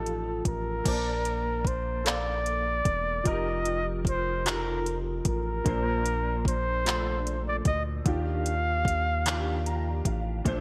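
A slow six-eight R&B groove sets an intimate, sensual mood in this fragment of a longer piece, with a polished electronic drum kit entering at 0.1 s: soft kick, handclaps, metallic hi-hat and crash cymbal, overdriven, treated with gated reverb and placed up front. A breathy, whispered flugelhorn carries the melody with vibrato and a soft attack, over a dark, vintage baby grand piano with long sustain and an ensemble chorus, and a sawtooth-and-square synth bass with ring modulation, a fast attack and sustained tone. Bright 1980s-style digital production and light digital ambience frame the rich ninth chords, and the piano adds a fill from 9.3 s.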